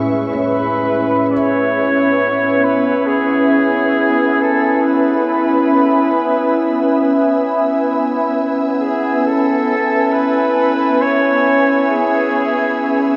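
Serene and weightless, this ambient passage in A major drifts in free time, cut from a longer piece and soaked in a huge, dreamy reverb. A glassy FM pad sits up front, holding slow-blooming sustained chords with ensemble chorus, while an overtone-sweeping drone hums in the background with resonant, ring-modulated colour. A felt-muted upright piano, dark and intimate with audible action noise, plays brief arpeggios through a diffuse delay and stops at 1.8 seconds. From 0.4 seconds a warm flugelhorn carries a distant, roomy solo melody with light vibrato, up front beside the pad. A veiled con sordino chamber violin section fades in from 1.3 seconds as the harmony settles from C#m7/A onto a rootless Amaj9.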